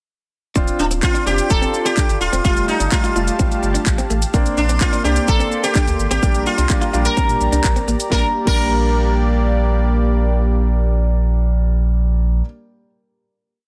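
A carefree, summery dance-pop piece opens at 0.6 s with a punchy, up-front house beat of four-on-the-floor kick, cracking snare, hi-hat, handclaps, shaker and crash. A round sine sub bass plays a syncopated line with chromatic approach notes, joined by intimate, close-voiced grand piano chords with audible action noise, a detuned sawtooth analog pad with chorus, and a muted, scooped clean electric guitar line in the background under lush chorus; the bass, piano and pad all pulse with sidechain pumping. A bright, buzzing sitar with shimmering sympathetic strings carries the hook phrases through tape echo, and after the drums and guitar stop at 8.6 s the remaining parts ring out on a final chord in a dense, heavily limited modern master.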